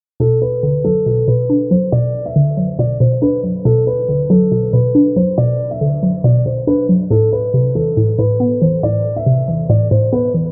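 A half-time 4/4 pulse at 139 BPM drives this menacing, tense hip hop fragment in B phrygian, where a mellow, long-sustaining baby grand piano carries an up-front melody over a hollow, bouncy square-wave pluck with detuning, a noise layer, a sub octave and chorus, the harmony moving from Bm to Amadd9 at 7.1 seconds while a filter sweep runs throughout a dusky, low-passed production with a light studio reverb.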